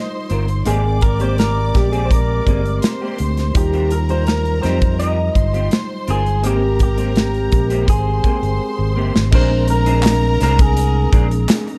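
A dark, reverb-soaked studio sound frames this lush 1970s-style soul excerpt, with a punchy kick, medium-tuned snare and bright cymbals sitting up front beside a growly, amped fingered bass. A slightly broken-up electric guitar through a small old amp carries the melody, while a second guitar through the same kind of amp plays a riff colored by ensemble chorus. A rich, close string section with vibrato adds a second line through analog delay. A worn, slightly out-of-tune tine electric piano, lightly overdriven through its built-in speakers, fills in the accompaniment over unhurried chords that shift between Eb69 and Abmaj9. A drum fill at 8.6 s leads into a new passage on Bb9 at 9.3 s, where hollow group handclaps join in the background from 10.0 s.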